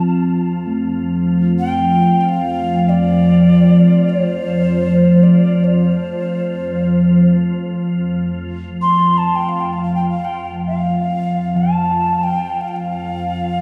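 A huge ambient reverb with a long 4.4-second tail wraps this short, calm and spacious passage of world meditative music, cut from a longer piece. Up front, a soft, organ-like pad holds a pure, full-bodied drone in the low register, its detuned sine tones thickened by ensemble chorus and its own built-in reverb, with a slow attack and long release. In the background, a bronze singing bowl struck with a felt mallet adds a mellow, metallic ring with slow beating, heard as if from a small, boxy room. At 1.6 seconds an alto ocarina enters as the melody, its clay tone airy and expressive with gentle vibrato and a soft attack, sitting forward yet sounding distant through a tape echo. The effect is unhurried and contemplative, the ocarina's airy line floating above the sustained drone and the bowl's ringing tone.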